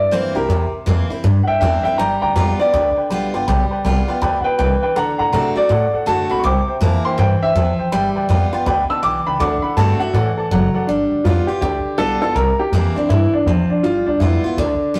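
A rowdy, upbeat swung rockabilly fragment opens with a dark, mellow, vintage upright piano taking an up-front solo melody alongside a bright, full-bodied picked steel-string acoustic guitar with audible finger squeak, and a thumpy, woody pizzicato upright bass on gut strings enters at once, over shuffling C7, G7 and D7 changes. From 2.0 s a second upright piano with a clear, open tone and long sustain adds accompaniment until 10.8 s. The whole band sits in a rough rehearsal-room recording with warm saturation and moderate stone-room reverb.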